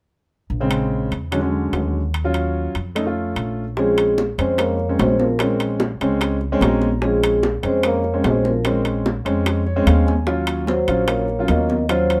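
An intimate grand piano with deep bass and audible action noise sits up front in this sultry, driving Afro-Cuban jazz excerpt in Bb minor at 148 BPM, adding fills at 6.4 and 9.5 seconds over chords such as Bbm7, E13 and Ebm9. It opens with a dark, woody pizzicato upright bass and close, dry metal-shell timbales. At 3.8 seconds a ringing, metallic vibraphone takes the melody with its motor off, joined by a mellow trombone with light vibrato on a second line and by background percussion from round, low-tuned bongos and high-tuned congas, all in a light reverb.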